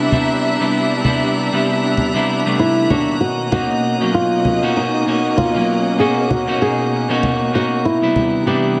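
A dark, thumb-plucked flamenco guitar carries the melody from 2.6 seconds, sitting up front with digital delay in this warm, smooth sunset chillout excerpt at 97 BPM with a gentle 16th-note swing. A clean, picked electric guitar, also treated with digital delay, accompanies over lush bowed string chords with vibrato, while a glassy, drifting sine texture with chorus and its own reverb shimmers high above. Gritty, compressed congas, re-recorded in a large room, drive the groove as the harmony moves from Cmaj9 to Bmaj9 and back, all set in a moderate plate reverb with small room ambience.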